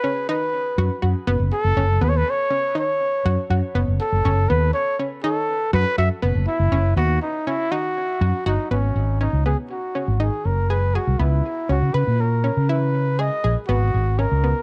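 A close-miked, breathy trumpet with vibrato and scooped notes carries a jazz-style solo melody through tape echo, leading this brooding, intricate progressive instrumental in 5/4 while a detuned sawtooth analog pluck with a sub octave, chorus and echo spins arpeggios and a dark, round fretless electric bass with lush chorus enters up front at 0.8 s, all in a dry, soft-topped mix that drifts from an F#sus4 opening into G#m7 at 8.7 s and C#m7 at 11.2 s before this short cut from a longer piece ends at 14.6 s.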